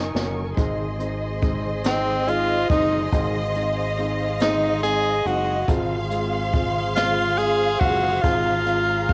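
This slow six-eight pop ballad sways at 47 dotted-quarter beats per minute, opening with a brushed drum fill that runs until 0.6 seconds before the kit settles in with hi-hat, boomy kick and a high-tuned snare, its top rolled off. A bright tenor saxophone carries the heartfelt melody up front from the start, singing with vibrato and scooped notes in a jazz style, touched by analog delay. Around it, a lush studio string section holds sustained chords with portamento from a distance, while a mellow, vintage-toned grand piano fills in the accompaniment and a fingered electric bass growls low and direct. At 0.6 seconds a dark symphonic violin section enters with an expressive second line, also carrying analog delay. The harmony moves from Gb to Ab and then to Fm at 5.7 seconds, and the home cassette recording lends tape character to most parts in a lightly reverberant space, all within a short cut from a longer piece.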